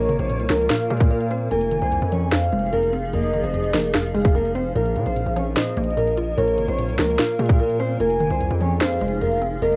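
Through a cassette home recording in a small room, this menacing, hard-hitting trap excerpt in Bb minor rides a half-time feel at 148 BPM. A boxy, fingerpicked nylon-string guitar carries the melody, shadowed by a velvety, smooth sawtooth synth lead with chorus, vibrato and tape echo. A hollow, bouncy square pluck supplies the accompaniment, while a cloudy, granular pad sustains Bbm and Fm7 chords beneath. A saturated, heavy distorted 808 bass holds the low end, and an up-front trap kit of hard-clipped kick, sharp snare and metallic hats enters at 0.1 seconds.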